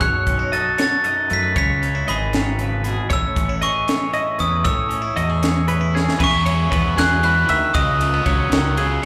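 Math rock and midwest emo in a straight 6/8, playful and wistful, heard live through a club PA with club reverb in this short cut from a longer piece. A sparkling, bell-like glockenspiel carries the melody with slapback echo and analog delay over twangy arpeggios from a subtly chorused twelve-string electric guitar, direct-recorded clean guitar accompaniment, a fuzzy, up-front fingered bass, and a crisp fusion kit with bright cymbals, a high-tuned snare and a punchy kick in a pumping small room. After a drum fill at 5.9 seconds, a double-tracked overdriven electric guitar riff joins at 6.2 seconds as the harmony moves to E6.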